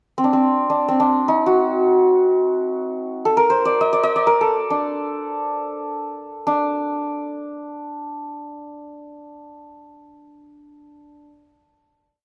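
Persian modal ensemble music in free time, set in dastgah homayun on D, this stately, warm whole piece features a solo santur, up front and closely miked, playing an ornamented modal melody in a shimmering, ringing hammered tone from 0.2 seconds and settling on a final note at 6.5 seconds that lingers in a moderate recital hall reverb.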